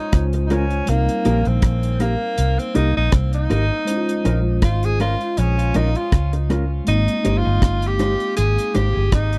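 A tenor saxophone carries a longing, bittersweet solo through this lovers rock reggae excerpt, its light vibrato and roomy, distant tone still sitting up front, with tape echo trailing its phrases over a gently swung groove and chords moving from Bbm7 to Cm7 and back before settling on Abmaj7. A mellow tine electric piano, heard through its built-in speakers and also touched by tape echo, fills in the accompaniment. A round, foam-muted bass and a dry drum kit with a tight kick, hi-hat and echoing rim click hold the bottom up front, while a dark, clean, compressed electric guitar adds stabs from 0.3 to 8.9 seconds, all captured in a close, 1970s-style studio sound with light reverb.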